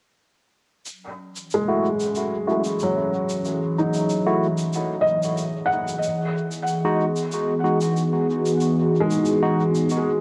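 A felt-muted upright piano sits up front, its soft, intimate arpeggios carrying audible action noise and a short sustain through a low-pass filter, tape echo and cassette tape coloring. Alongside it, a warm analog pad of detuned sawtooth tones holds sustained chords with a soft attack, smoothed by chorus and roughened by vintage 12-bit sampler grit. A barky tine electric piano adds bright, clean stabs from 1.7 s, its direct sound sent through dub echo and filtered like the felt piano, while a filter sweep runs across the pad and both pianos. A faint acoustic shaker with a mid-forward, rolled-off top keeps the 93 BPM pulse in 4/4 with a light swing, trailed by dub echo. This hazy, meditative ambient dub excerpt moves from F#7(no3) to Emaj9 at 6.0 s, all set in a moderate spring reverb with the intimate feel of a home cassette recording.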